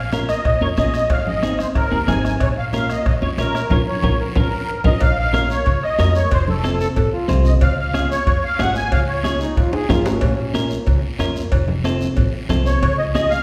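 A driving, danceable cumbia at 184 BPM in Bb minor, where a reedy, shimmering musette accordion leads up front over woody, thumpy pizzicato upright bass, twangy picked electric guitar, a soft-beater bombo, high-tuned congas, raspy guiro and ringing cowbell and timbales, with a band accent and drum fill from 3.7 to 5.0 seconds, a bright vibrato trombone line that first peeks in at 6.8 seconds and returns at 9.4 seconds as the accordion drops out, and a church-like hall reverb around the cut-off passage.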